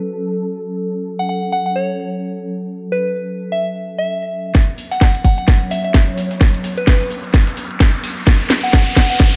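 Bouncy and aggressive, this bass house cut runs at 129 BPM in F# minor with a 16th-note swing. A bright, detuned sawtooth pad holds sustained chords from the start, its resonant filter swell and sidechain pumping giving the opening a restless pulse. At 1.2 seconds a soft FM synth bell enters with a pure, mellow melody, its fast attack and long release trailed by chorus and tape echo. The build-up arrives at 4.5 seconds as the pad's filter begins to sweep and the drums come in together: a tight, up-front electronic kick, a garage kit with a cracking snare and metallic hats, and a gritty, pitched-up breakbeat kit sitting in the background, all playing a drum fill. An electronic riser joins at 6.6 seconds, and a light digital ambience surrounds this short section cut from a longer piece.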